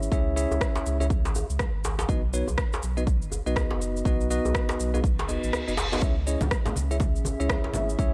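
The sound is dry and close, with little reverb, in this earthy afro house excerpt at 122 BPM in 4/4 with a 16th-note swing in C# minor, tuned to A4 = 439 Hz. A punchy, layered electronic kick sits up front alongside an electronic shaker and rim click, while a tight, cracking djembe adds compressed, saturated acoustic texture. A round, deep sine sub bass and a bell-like, clean tine electric piano playing stabs both pump against the sidechain, the piano also carrying a tape echo as the chords move from C#m to B and back. A reverse cymbal rises at 5.3 s and the kick drops out briefly at 5.5 s, after which hard-hand congas appear near the close. A moody, detuned analog pad with slow attack, chorus and phaser enters in the background at 6.8 s, adding dark sustained chords beneath the groove.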